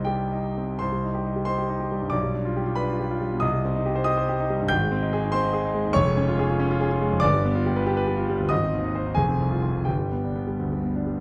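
Dark and warm, this recording places a concert grand up front in a recital hall whose moderate reverb gives each chord a natural bloom. It is a stormy, agitated classical piano study in C minor, a brief cut from a longer piece, moving in 6/8 at roughly 77-97 BPM counted in dotted quarters. The rubato feel lets the pulse stretch and press as the solo piano ranges from F1 up to G6, its deep bass anchoring the turbulence. The harmony begins on Cm, passes through G7/B, Abmaj7 and Db/F, then gathers toward G7 at 7.2 seconds. A final run of Ab, Fm and G leaves the music poised on the dominant as the excerpt closes at 11.2 seconds.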